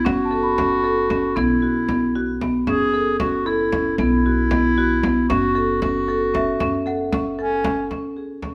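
Dark, smooth marimba arpeggios played with medium hard mallets sit up front in this shimmering, hopeful excerpt of contemporary chamber music in 5/8 at 229 BPM in eighths, joined by an equally forward, soft-attacked classical clarinet second line, woody, thumpy gut-string pizzicato upright bass, a deep frame drum struck close and dry with hard hands, and bell-like, sweet celesta touches at 0.1 and 6.3 seconds, moving through F#m, Bsus4 and F#m7 to a closing C#5 in a reverberant studio heard from further back with a faint mains hum.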